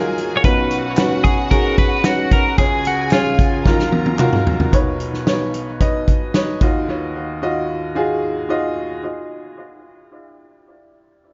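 An echo-heavy, lightly reverberant mix with a rolled-off top end frames this bittersweet, dramatic piano-driven pop excerpt in Eb minor at 112 BPM, where a bright, woody upright piano with long sustain sits up front as accompaniment, a twangy, clean twelve-string electric guitar carries the melody, a smooth bowed violin section with vibrato adds a second line, a punchy acoustic country drum kit with a medium-tuned snare plays a fill at 3.7 seconds, very quiet crisp handclaps join briefly, and the piano plays alone from 6.7 seconds until 9.0 seconds, after which the music slows down.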